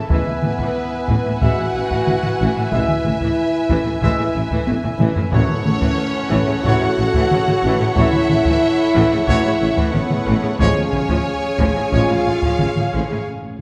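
Bathed in a wet scoring-stage reverb, this heroic, majestic slice of epic orchestral film score moves at a straight 91 BPM in 4/4, with bowed violins singing an expressive, vibrato-rich melody over a second violin line and background violas, while mellow French horns, a romantic-voiced pipe organ on foundation stops and very quiet trombones hold sustained chords, soft-attack trumpets add stabs, a mellow tuba, distant cellos and double basses anchor a low A, heavy-stick taiko drive the pulse with a fill just before 5.3 s, and close, dry timpani with hard mallets strike briefly at 5.3 s and again in a closing fill at 13.3 s.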